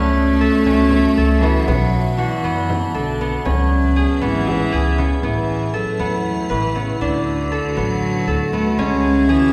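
This urgent, hypnotic piece of contemporary chamber music opens with a fingerpicked concert harp ringing up front in arpeggios, over a crystalline, icy glass pad of slow-attack sustained chords with chorus and its own built-in reverb. Beneath them, a pizzicato upright bass with a woody, thumpy tone carries the low line, while a single bowed cello, played sul tasto with light vibrato and an airy, intimate bow, adds a soft second line. A small, bright frame drum sits very quietly in the mix until it drops out at 4.7 seconds. The music moves in a straight 7/8 at 237 BPM counted in eighths, tuned to A4 = 436 Hz. The harmony passes through F#m7/C#, Bm7 and C#m7 before shifting at 5.2 seconds to a second section of Asus2, D and C#m. A wet recital-hall reverb with a 1.5-second decay gives the whole passage, cut from a longer piece, the resonance of a church or concert hall.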